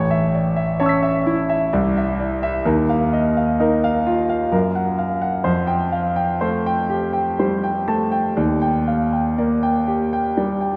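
Flowing in a rubato 3/4 at roughly 60-67 BPM, this short passage from a longer impressionist piece for solo piano moves with an unhurried, breathing pulse. The mood is mysterious and wistful, carried entirely by a grand piano with a warm, natural tone that sits up front and spans from A1 up to B6. Its harmony drifts through colourful, ambiguous chords, beginning on Aadd9 and passing through Cadd9, D#sus2, F# and Fadd9 before settling on Ebmaj7 at 8.4 seconds. A wet church reverb with a long 3.4-second decay surrounds the instrument, giving the sound the spacious glow of a church or concert hall. The piano plays alone for the full 10.8 seconds, and the resonant space lends each shifting chord a hazy, suspended quality.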